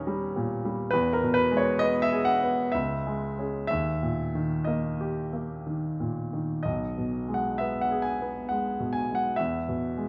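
A D#7 chord on solo grand piano opens this mournful romantic nocturne in G# minor, moving in a rubato 3/4 at around 60-70 BPM through E, C#m and D# before reaching G#m/B and E. The piano sounds polished and up front with a short sustain, spanning B1 to G#5 within a moderate recital hall reverb. This melancholic 10.1-second passage is cut from a longer piece.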